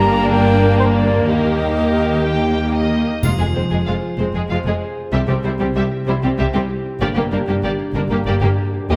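Determined and adventurous, this heroic film-score passage moves at 126 BPM in a straight 12/8 in F dorian, with a lush, distant violin section carrying the melody over second violins, violas, cellos and double basses, all bowed with vibrato, while a ringing harp plays arpeggios beneath. An airy silver flute adds a second line, and roomy French horns and very quiet, mellow trombones hold chords, all falling away by about 2.7 to 3.0 seconds. At 3.2 seconds the harmony shifts to F minor with a close timpani stroke and a dry triangle and cymbal swell, whose bright cymbals return from 7.0 seconds, all set in a wet scoring-stage reverb.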